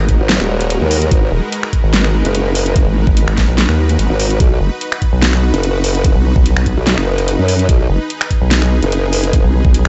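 A dry, dark-toned mix with its top end rolled off carries this chaotic, menacing fragment of heavy wobble dubstep at 146 BPM in a half-time feel, where a nasal, resonant vowel-sweep wobble bass and a saturated pulse-and-sine formant-sweep wobble bass sit up front with chorus and overdrive, a knocking kick and a drum kit of huge snare, metallic hats and finger snaps sit up front with tape-warm small-room ambience, and a lush, detuned supersaw pad pumps beneath on sustained chords moving from G#m7 to B at 4.4 seconds.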